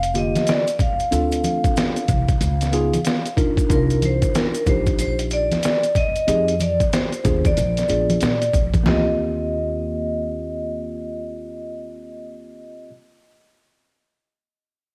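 A hazy, home-taped cassette sound with light studio reverb frames this relaxed, cool jazz-hop excerpt, cut from a longer piece and moving at 93 BPM in Eb major with a swung sixteenth-note feel. Up front, a sampler-style trip hop kit sounds compressed, pitched down and overdriven, with a muffled, thumpy kick, a medium-tuned snare, hi-hat, handclaps and toms, while close, dry maracas and congas played with hard hands sit in the background; both drop out around 9 seconds. A woody, pizzicato upright bass on steel strings, lightly saturated, anchors the low end throughout. A worn, slightly out-of-tune tine electric piano enters at 0.1 seconds with mellow chords moving from Gm7 through Db9 and Cm11 to Bb7b9. Over it, a bright, airy vibraphone with medium hard mallets and a slow motor vibrato carries the metallic, ringing melody, and the passage settles onto Eb69 at 8.9 seconds, where bass, keys and vibraphone carry on together.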